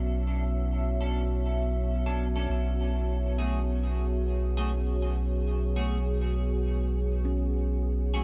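Spacious and deep, this ambient excerpt unfolds over a lightly swung sixteenth-note feel in 4/4. A dark, moody pad holds sustained chords from the start, its detuned, slow-blooming tone coloured by chorus and its own reverb, while a soft dub sub bass sits up front with a round, fast-attack presence on a low B. The harmony moves from Bm9 to F#sus2/B at 2.5 seconds. From 1.0 seconds a clean electric guitar adds bright, twangy picked stabs, softened by analog chorus and a low-pass filter and trailed by dub echo. At 7.2 seconds a handpan enters in the background with ringing, meditative arpeggios played with the fingertips, its airy tone carried on tape echo, all within a light digital ambience.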